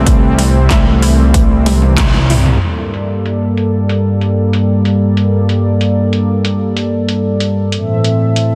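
A straight 4/4 pulse drives this cinematic synthwave fragment, set by a punchy, tape-warm electronic kick that drops out at 2.1 s and an 80s-style kit of handclaps, metallic hats, gated snare and toms that carries on. A fat, detuned sawtooth bass pumps under sidechain until 2.6 s, while a smooth, chorused analog pad sits up front throughout. In the background, a soft, dark octave-layered lead with phaser and vibrato and a warbling, lo-fi pluck with tape echo trace melody and arpeggios in the opening seconds, before a drum fill and band accent give way to filter sweeps on the drums and pad as the chords move from C to Gmadd9 and then Am, all in a lush hall and a dense, heavily limited master.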